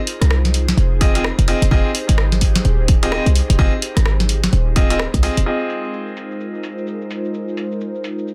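A soft, airy pad opens this bouncy, soulful two-step UK garage excerpt in Ab major at 128 BPM, its sustained, chorused chords pumping against the sidechain as a punchy analog drum machine with tape-warm snare, filtered hats, cabasa, rim click and crash enters almost at once. From 0.2 seconds a tight, up-front 808-style bass with tube saturation drives the groove, joined at 1.0 second by a layered electronic kick and brilliant grand piano stabs trailing dub echo, while the harmony moves from Ab6 to Fm7. Kick and bass drop out by 5.4 seconds, leaving pad, drums and piano over the returning Ab6 chord in a lightly reverberant, densely limited mix.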